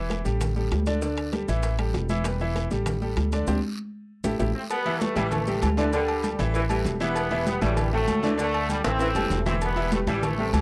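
This passionate, danceable salsa excerpt opens at a brisk 196 BPM with a bright, polished baby grand piano and a woody, thumpy pizzicato upright bass up front. Behind them sit ringing high-tuned congas, metal-shell timbales with agogo bells, raspy guiro, grainy maracas and very quiet tight bongos with cowbell, and a drum fill and band accent at 3.5 seconds lead into the next section. A punchy trombone section with light vibrato takes the melody from 4.6 seconds, joined at 4.9 seconds by a tight saxophone section in the background, both sounding distant and roomy within a dry, close 1970s-style studio sound over chords moving among A7sus4, Em and Am7.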